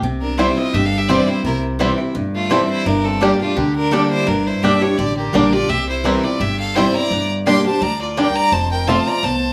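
A swung 4/4 pulse at 170 BPM drives this haunting, lonesome bluegrass excerpt, moving from C to G minor and landing on F. A picked, fresh-stringed archtop guitar sits up front with the accompaniment, while a twangy fingerpicked banjo plays arpeggios in the background, a round double-strung mandolin adds stabs from 0.4 seconds, and a woody, dark pizzicato upright bass holds the low end. Above them a clear, focused fiddle with light vibrato and plate reverb carries the melody, joined by a second, biting fiddle with an airy bow playing its own line farther back, all in a moderate studio room.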